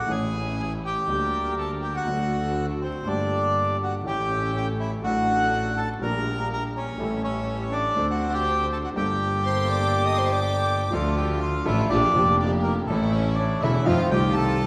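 A reedy, airy bandoneon carries the melancholic, sultry melody up front in this rubato tango in G harmonic minor at 122 BPM, over intimate concert grand piano with audible action noise, a rich bowed double bass, and distant gut-string chamber string stabs, while a clear violin section and a dark, roomy clarinet add second lines from about 9.4 seconds, all set in a scoring-stage reverb with vinyl crackle.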